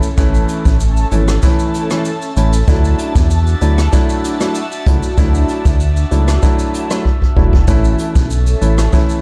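A bouncy, summery dancehall excerpt at 96 BPM in straight 4/4 opens with a concert grand piano playing accompaniment in its middle register, its tone deep with short sustain, beneath an airy, breathy pad holding soft, detuned sustained chords colored by chorus, phaser and sidechain pumping. An acoustic brush drum kit sits up front with a boomy kick, hi-hat, rim click and shaker, sounding natural in a studio room. A round analog bass enters at 0.2 s, deep and up front with a fast attack and sustained notes. The harmony moves from A to Dadd9 at 2.7 s, and a drum fill from 7.1 to 7.7 s leads back to A. The whole piece carries a dark production in a small room ambience, the clip being cut from a longer piece.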